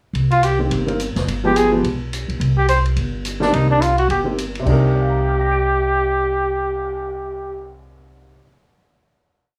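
Upright bass and an open acoustic jazz drum kit start together at 0.1 s, setting a smoky, moody small-group swing-and-bop groove in C minor at a brisk 213 BPM. The pizzicato bass sits up front with a woody, thumpy gut-string tone in a two-feel, while the drums play a stick ride cymbal pattern with dark cymbals, a medium-tuned snare, a boomy kick, hi-hat, crash and a cymbal swell. A clear flugelhorn with vibrato enters at 0.3 s and leads up front with a vintage, bebop-style theme that returns. A warm baby grand piano joins at 0.6 s with syncopated comping in drop-2 voicings and a short sustain. The brief piece moves from Cm7 to G7b9 and back to Cm7 before closing on a final chord, all set in a moderate club reverb that gives a small-room ambience.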